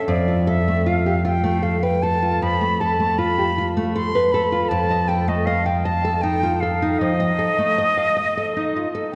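From the first moment, a silver concert flute with an airy, vibrato-laden tone and soft attack sings an elegiac melody over the dark, woody fingerpicking of a nylon-string classical guitar with old strings, both up front in this melancholic romantic duo at a rubato 52 BPM in 12/8, moving from F(#11) to F7 at 4.7 seconds in a brief fragment bathed in a wet cathedral reverb.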